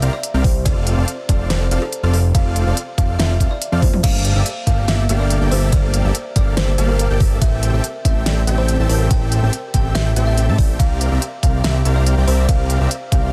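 An overdriven, knocking electronic kick sits up front from 0.4 seconds, driving this lush, emotional future bass drop at 142 BPM in a half-time feel, cut from a longer piece in G dorian. Beneath it, a fat analog bass with thick, nasal, saturated sawtooth and square-wave tones pumps to the sidechain. A huge, detuned unison supersaw, also pumping, plays a sustained, compressed riff with a sub octave and vibrato. A woody kalimba carries the melody with a ringing thumbnail pluck and a hollow, band-limited vintage character, its notes echoed by digital delay and shaped by sidechain pumping. A layered pop drum kit adds a fat snare, crisp hats, ride, crash and toms with a tape-warm sheen, and a drum fill at 3.8 seconds leads into the second pass of the drop at 4.0 seconds. The harmony moves through C9sus4, F6, Gm9 and Am7 in a dry, dense and heavily limited mix.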